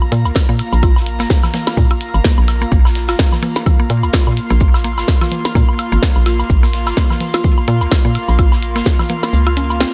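A cool, clinical minimal techno excerpt at 127 BPM in 4/4 with a 16th-note swing opens on dry woodblock and congas trailed by tape echo, beneath a breathy, slow-blooming pad that pumps to the sidechain under chorus. A hollow, bouncy FM bass sits up front alongside a tiny click kit of cabasa, clicky hats and snare, while a woody, mallet-like synth pluck riff with a moving notch and tape echo hovers in the background with a gritty, saturated acoustic kit whose hats and snare are high-passed. A layered, punchy electronic kick enters at 0.4 seconds and drops out at 9.3 seconds, all set in a digital ambience.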